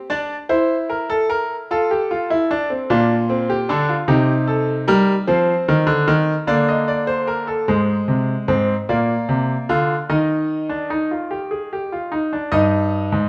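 Stately and joyful, this short passage cut from a longer piece is a baroque-style three-part fugue for solo grand piano, moving at 50 BPM in a straight 6/8 counted in dotted quarters. The piano has a bright, brilliant, natural tone with short sustain, sitting up front and ranging from G2 to Eb5 across its 13.3 seconds. It opens in Bb major, passing through chords such as C7/E, F, Bb and Cm7 before settling on Bb/D. At 7.7 seconds a second section shifts the key to Eb major, moving through Ab and Bb to Eb and closing on Eb/G. A wet stone room reverb with a 1.2-second decay places the listener further back in the room, lending the contrapuntal lines a resonant, spacious halo.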